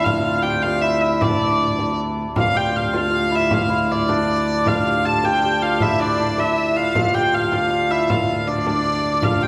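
Medieval dance in a straight 6/8, driving and ancient in mood, with a smooth, rich hurdy-gurdy carrying the melody up front while a shimmering hammered dulcimer plays a second line beneath it. A clear, floating viola da gamba holds a low drone with light vibrato, and a small, saturated frame drum joins at 0.1 s. The whole ensemble rings out in the long, wet reverb of a church or concert hall, and the music moves into a new section at 2.4 s in this brief cut from a longer piece.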